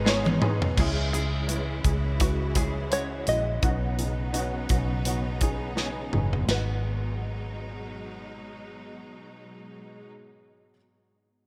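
Piano-driven pop with a bittersweet, driving mood, built on a woody, slightly detuned upright piano with a chorus effect, a plunky open-back banjo carrying the melody, lush bowed strings holding chords, a round foam-muted electric bass, a punchy drum kit with fills at 0.1 and 5.8 seconds, and a full-bodied steel-string acoustic guitar riff that stops at 0.8 seconds, all set in a small room with light reverb and a bright 1980s-style digital sheen.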